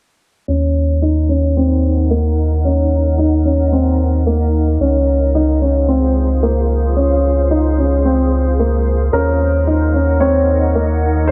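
A dark, low-passed production in a concert hall's 2.6-second reverb frames this melancholic, cinematic electronica fragment at 111 BPM in Eb dorian, with a filter sweep running throughout. A mellow grand piano riff with delay and a deep, round sine sub bass sit up front from 0.5 seconds, moving from Ebm7 to Dbmaj7 and back, while a cloudy, wave-folded granular pad drifts in at 1.6 seconds with its own built-in reverb. At 9.1 seconds a soft, felt-muted upright piano adds an intimate melody through a delay, its action noise audible.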